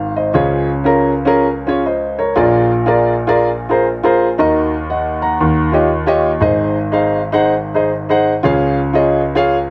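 Lightly reverberant, this brief hopeful, soulful gospel passage in Db major at 118 BPM swings gently in 4/4 as a solo grand piano with a smooth, vintage, up-front tone moves from Db through Bb7, Ebm, Eb9 and Ab before settling back on Db at 8.4 seconds, where it is cut off at 9.7 seconds.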